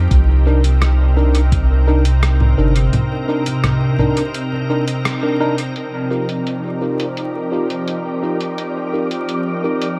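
Ambient dub with a spacious, hazy mood, cut from a longer piece, built on an organ-like pad of chorused, detuned sustained chords that sits up front over a round, saturated sub bass and a deep, layered electronic kick. The kick falls away at 1.7 seconds, and the bass follows as a break arrives at 2.9 seconds. A muffled, pitched-down sampler-style kit of congas, hi-hat and rim click runs throughout, overdriven and filtered with dub echo, while a clean tine electric piano plays echoing stabs. After the harmony moves from Cm9 to F9sus4 at 5.8 seconds, a breathy, wind-like tuned noise texture drifts in at 6.4 seconds, all set in a dark production with vinyl crackle and light reverb.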